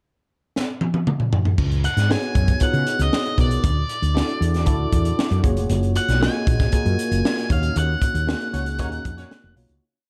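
A crisp fusion drum fill opens this glossy, upbeat 1980s jazz-funk pop piece in F# major at 116 BPM at 0.6 seconds, then a growly, woody fretless bass drives an agile syncopated line with muted ghost notes, a distorted octave-fuzz lead guitar plays motif-based call phrases, a bell-like tine electric piano adds rootless chord stabs with grace notes and subtle chorus, and a mellow, distant horn section punches a phrase end at 8.5 seconds as the band accents through the fade-out, all in a dark small-room production.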